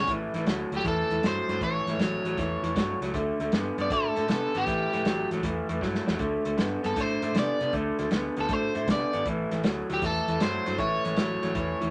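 A crunchy, overdriven electric guitar carries the picked melody up front in this rollicking, soulful electric blues shuffle at 157 BPM, swung in 4/4 and set in A mixolydian. Beneath it, a second guitar through a small old amp plays a slightly broken-up, compressed, lo-fi riff bathed in spring reverb, while a vintage foam-muted fingered bass adds a round, dark low end. A smooth, dark soul drum kit with a punchy kick, a medium-tuned snare, hi-hat and a rolled-off top drives the groove, marked by a short fill at 5.8 seconds, all in a moderate studio room on this clip cut from a longer piece.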